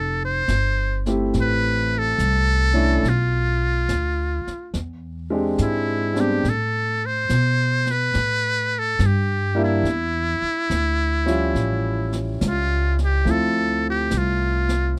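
Jazz ballad with a gentle swing, tender and romantic, led up front by a buzzy, thin trumpet in a metal mute singing the melody with vibrato and scooped notes, over a woody, dark pizzicato upright bass, a softly mixed brush kit of snare and hi-hat entering at 0.5 seconds, and a warm grand piano with deep bass joining at 1.1 seconds, all captured in a dry, close 1970s-style studio sound.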